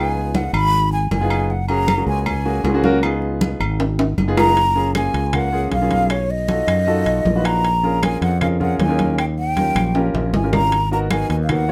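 Afro-Cuban jazz with a sophisticated, danceable mood: a breathy concert flute with expressive vibrato carries the melody up front over an intimate grand piano with audible action noise and a growly fretless electric bass, while thick-skinned congas and woody claves sit in the background, ringing agogo bells and timbales sound close and dry, drum fills arrive at 3.8 and 9.6 seconds, and a moderate studio reverb surrounds this excerpt.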